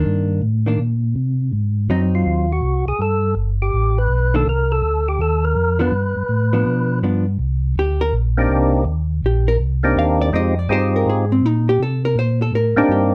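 Bluesy and smoky, this swinging jazz cut, taken from a longer piece, moves in 4/4 with a swung eighth-note feel. A mellow tonewheel organ carries the bass line from the start, its round, clean tone colored by chorus vibrato and a slow rotary speaker, while a hollow-body electric jazz guitar comps with a dark, picked and compressed sound. At 1.9 seconds a percussive tonewheel organ enters with the melody, fat and lightly overdriven, with third-harmonic percussion, vibrato and its own slow rotary swirl. At 7.4 seconds the music moves into a new section where the guitar steps forward to solo over changes built around Cm9 and Fm9, after an opening pass through Cm9, Ab7, G and G7. All three parts sit up front in a dark, warm production with moderate studio reverb.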